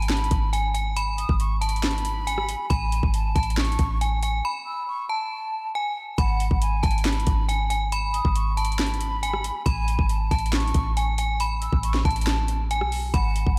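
A dreamy, reverb-soaked mix frames this dark, melancholic half-time trap excerpt at 138 BPM in G# phrygian, where a ringing, inharmonic FM bell carries the melody with chorus and delay, a breathy, hollow concert flute with vibrato traces a delayed second line, a deep, boomy sine 808 bass anchors the low end, and an up-front trap kit of hard-clipped kick, sharp snare, metallic hats, rim clicks and handclaps drives it all, with a break arriving at 4.4 seconds.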